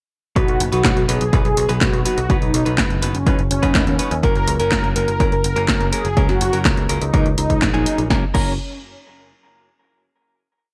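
Romantic and sunny, this short italo disco piece at 124 BPM in F# major moves from B to F# over a punchy four-on-the-floor electronic kick and a house kit of snare, handclaps, hi-hat and crash with gated reverb, while a growly picked electric bass runs sequenced sixteenth notes, a clean, direct-recorded electric guitar adds compressed dotted-rhythm chord stabs, and a mellow, detuned sawtooth synth brass carries a repeating riff melody with chorus and tape echo before the piece settles on a final chord from 8.1 to 10.0 seconds.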